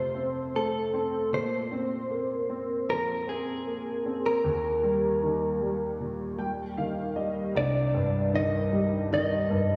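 Emotional and heartbroken, this pop piece in C minor moves at 77 BPM in straight 4/4. A clean, compressed electric guitar carries the picked melody through a lush chorus, while a warm, polished grand piano with analog chorus provides the accompaniment, adding a fill from 6.0 to 7.6 seconds as the harmony moves from F through Bbsus2 and Eb to a closing Cm. Both instruments sit up front in a dreamy mix soaked in a lush hall reverb with a 2.8-second decay.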